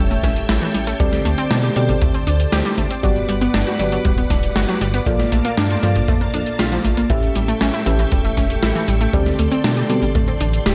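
Uplifting and nostalgic, this brief synthwave excerpt at 118 BPM in straight 4/4 sets a lush, sidechain-pumping string machine ensemble over a glossy chorused synth bass, with a detuned analog pluck tracing bright arpeggios and a mellow FM electric piano adding soft, decaying stabs through digital delay, while a tape-toned 80s drum machine with gated-reverb snare, hi-hat and shaker joins a boomy big-room kick over chords moving from A7 and D7sus4 to Gmaj7 and Bbmaj7 under light reverb.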